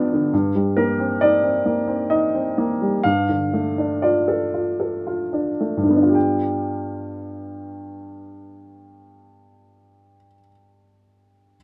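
A close, intimate sound opens this brief cut from a longer piece: a baby grand piano sits up front with a warm, natural tone and short sustain, set in a small room with a moderate touch of reverb. It is neoclassical minimalist piano in 3/4, played solo with a free, rubato feel at roughly 54 to 70 BPM, and tuned to A4 = 444 Hz. The mood is melancholic and private, with harmonies moving from Cm7/G to Dm/G over a G in the bass. Through the first 6.1 seconds the playing gradually slows, then a new passage arrives on a G7 chord. The piano ranges from G2 up to F6 and plays across the whole 11.6 seconds.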